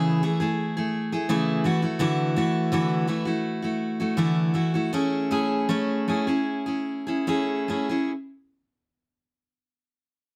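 Sunny and easy-going, this short pop excerpt sits in A major with a straight 4/4 feel at around 71-84 BPM. A lone picked steel-string acoustic guitar carries the accompaniment across the whole 8.1 seconds, its full-bodied dreadnought tone placed up front in the mix. The harmony moves from Amaj7/C# to Dadd9 at 1.7 seconds, then settles on Amaj7 at 4.9 seconds. From 2.0 seconds onward the tempo slows down, giving the passage a relaxed, unhurried feel. A light reverb adds a touch of space around the guitar, and the clip is cut from a longer piece.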